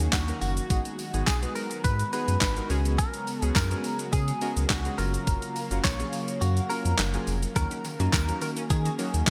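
A twangy, compressed clean electric guitar carries the melody over an overdriven, thumpy 12-bit drum machine with handclaps, hi-hat, shaker and snare, a deep sine sub bass with octave, glossy chorused retro synth keys with tremolo, and a soft, breathy pad in the background, with the keys, pad and bass pumping to the sidechain in this driving, energetic dance-pop excerpt at 105 BPM in Eb minor, moving through Ebm7, Abm7, Db7sus4 and Gbmaj7 with 1980s-style digital sheen, a barely audible electronic impact at the start, a very quiet jingly tambourine, the kick dropping out from 6.4 to 7.6 seconds, and a hollow, bouncy square pluck arpeggio entering at 7.6 seconds.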